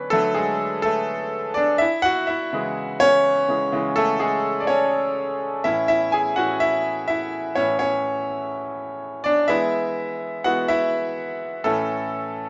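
A bright, brilliant grand piano sits up front and plays alone throughout this uplifting pop fragment, cut from a longer piece and moving in a straight 4/4 feel across a range from A2 to G#5. Its chords move from D to C#m, then to A and E before landing back on A near 11.6 seconds. A wet studio reverb surrounds the piano, and the rough home-demo mix gives the passage a warm, raw character.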